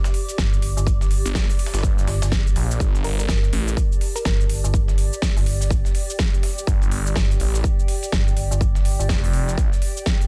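A dense, heavily limited, dry mix carries this bouncy, aggressive bass house excerpt, swung on the sixteenths, with a punchy, up-front electronic kick, a big-room kit of huge snare, crisp hats and cabasa, and a gritty sampler-style kit of snare and pumping hats tucked in the background. A dark, overdriven metallic FM bass holds a low G, joined by a swirling, thick detuned saw bass with phaser that enters at 1.3 s and returns at 6.7 s, both pumping against the kick. Above them, a warbling, nostalgic lo-fi pad with chorus, phaser and reverb pulses with the sidechain, and a round, tine-like thumb-piano pluck with chorus and delay appears briefly in the background at 3.0 s.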